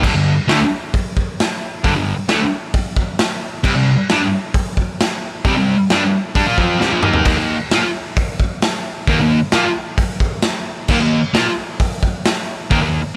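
A thick, double-tracked fuzz guitar leads this swaggering, gritty garage rock cut, playing a distorted, picked riff between G2 and F4 with a bright, up-front bite. The riff moves over G5, then C5 at 3.6 seconds and Eb5 at 7.3 seconds, all in G minor at a straight 132 BPM in 4/4. Beneath it, a raw acoustic drum kit of kick, snare, hi-hat, toms and crash cymbal sits up front, with a punchy kick, a medium-tuned snare and a saturated edge. The kit rings in a bright, pumping stone room, and a short drum fill arrives at 6.8 seconds. Light reverb and small-room ambience give the whole passage a close, live feel, and it is cut from a longer piece.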